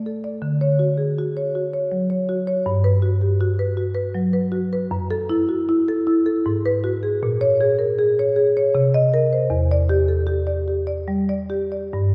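In a rubato 3/4 at about 79 BPM, this short excerpt from a contemporary classical piece for solo marimba has a playful, warm mood. The marimba, played with medium mallets on padauk bars, sounds woody, dark and smooth. It sits up front across a range from E2 to Eb5 and moves through Dmaj7, Gmaj7, F#m7, G#m7, Bbm7, Cm7 and Em7 over 12.1 seconds, with a wet concert hall reverb that lingers around the notes.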